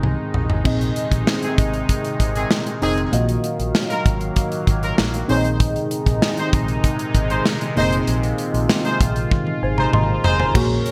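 A bright, 1980s-style digital production with plate reverb and a touch of small-room ambience frames this urgent, moody pop excerpt at 97 BPM in a straight 4/4, moving between Ab and Ebmadd9. Up-front acoustic drums with a punchy kick and gated reverb open on a fill and fill again at 9.3 seconds, under a dark, foam-muted fingered electric bass, a mellow FM electric piano treated with chorus and phaser, and an evolving detuned sawtooth pad that sustains bright chords. From 1.4 seconds a clear, smooth-topped horn section adds pop-style stabs carried by digital delay.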